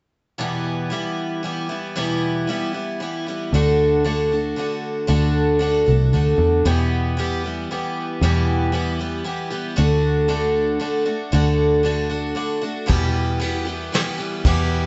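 A shimmering, octave-doubled twelve-string acoustic guitar opens this dusty, reflective folk rock and heartland rock passage in a steady three-beat metre, picked up front with audible finger squeak over a plain shift between E minor and D. A punchy, foam-muted electric bass joins at 3.5 seconds, and a soft brush kit with dark cymbals and a tight kick arrives only at 12.9 seconds. The band plays live together in a stone room with moderate reverb and a rolled-off, muted top end, and the recording is cut from a longer piece.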